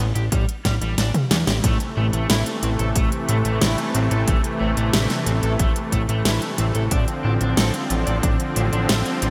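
A thick, detuned analog bass sits up front in this cinematic, nocturnal synthwave piece cut from a longer track, its sawtooth-and-square tone giving a plucky, sustained low end beneath a double-tracked, overdriven electric guitar riff roughened by 12-bit sampler grit, subtle chorus, low-pass filtering and digital delay. A punchy, tape-toned electronic kick and a layered pop kit with a fat snare, crisp hats and gated reverb drive the straight 4/4 groove, with a drum fill from 0.7 to 1.6 seconds before a smooth, soft-attack supersaw enters at 1.6 seconds with sustained, sidechain-pumped chords. The harmony moves from G5/A through Am to Dm7/A, set in a lush hall ambience with bright 1980s-style digital production.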